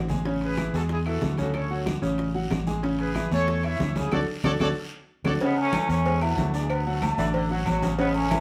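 A smooth-topped trumpet section with light vibrato carries the melody up front in this joyful, danceable salsa excerpt, giving way to a brilliant trombone section at 5.4 s, while a clear, distant saxophone section adds a brief second line at 7.2 s. Underneath, a bright grand piano plays Amaj7 and Dmaj7 chords and a dark, punchy fingered electric bass sits up front, with congas, bongos and cowbell, ringing timbales and agogo bells, and woody claves in the background, plus a raspy guiro. A drum fill and a band accent lead into the second section, and the group plays live in one room with moderate reverb.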